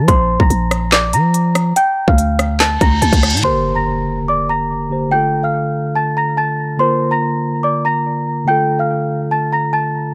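A delicate, bell-like celesta melody with analog delay opens this tense, cold drill excerpt. It is joined at once by a growling, buzzy 808-style bass and an up-front electronic drum kit with a hard-clipped kick, woody snare, crisp hats, handclaps and rim clicks in a half-time feel. The bass and drums stop at 3.4 seconds as a reverse cymbal leads into an electronic impact, and a mellow tine electric piano supplies clean accompaniment under the celesta until the cut at 10.1 seconds, all in a dry, gritty recording with little reverb.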